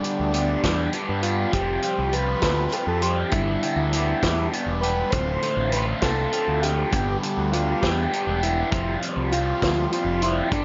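Trippy and hypnotic, this psychedelic rock excerpt sways in 6/8 at 67 BPM, circling through G, Fsus2 and Dm7 chords. A crunchy, double-tracked overdriven guitar riff with phaser and a growling, overdriven picked bass (entering at 0.2 s) sit up front beside a punchy vintage drum kit of kick, medium-tuned snare and hi-hat with a rolled-off top. Over them, a reedy combo organ carries the melody with light vibrato and slapback echo, all wrapped in studio reverb with a dark, mellow top end.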